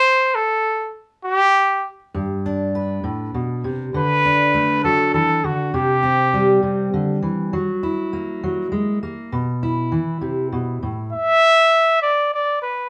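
Hopeful and uplifting, this folk excerpt in 6/8 opens with a warm, classical-style trumpet playing alone and up front; a full-bodied, fingerpicked jumbo steel-string acoustic guitar enters at 2.1 seconds beneath it, moving through Gadd9, D6, C, F#7 and Bsus4, until the guitar stops at 11.1 seconds and the solo trumpet returns by itself, all captured live in one room with moderate studio reverb.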